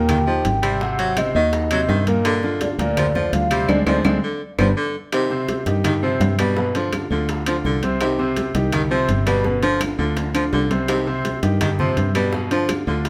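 Recorded in a moderately reverberant room with the band playing live, this passionate, driving salsa cut at 167 BPM opens with a hollow, warbling clarinet-like synth lead, treated with chorus and tape echo, carrying the melody until 4.7 s over up-front vintage grand piano, a round, dark fingered electric bass and a clear, smooth-topped baritone saxophone second line, while thick-skinned congas, tight, distant bongos, ringing metal-shell timbales and woody claves keep the groove, and a drum fill with a band accent pushes into the C harmonic minor passage at 5.1 s.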